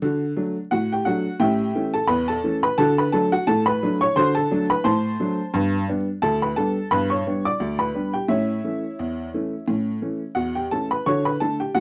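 A dry, close studio sound in a 1970s style, with light reverb and a layer of vinyl crackle, frames this cheerful, jaunty ragtime fragment taken from a longer piece. A solo upright piano carries everything, its tone woody, boxy and slightly detuned, with a worn character that sits up front in the mix. Set in 2/4 with a gentle swing on the sixteenth notes, the playing spans from D2 up to D6, filling both the low register and the top. The harmony moves from D through A7 and back, then turns to D7 at 4.2 seconds before settling on G for a longer stretch. A shift to A at 8.3 seconds sets up the return home to D at 11.1 seconds, closing this 11.8-second passage.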